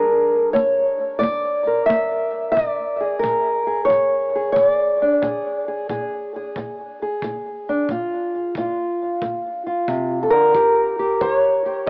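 Laid-back and gritty, this short cut from a longer piece is acoustic country blues with a swung feel in 4/4. An old ladder-braced acoustic guitar, fingerpicked and up front, carries the melody from the first moment, its dark, woody tone roughened by old strings, cassette tape and tape echo. A tight acoustic kick drum played with brushes enters at 0.6 seconds and sits in the background with a natural, small-room sound. The harmony rests on Bb7 before moving to Eb7 at 10.5 seconds. Moderate spring reverb and small room ambience frame a homemade cassette recording with the character of an AM radio broadcast.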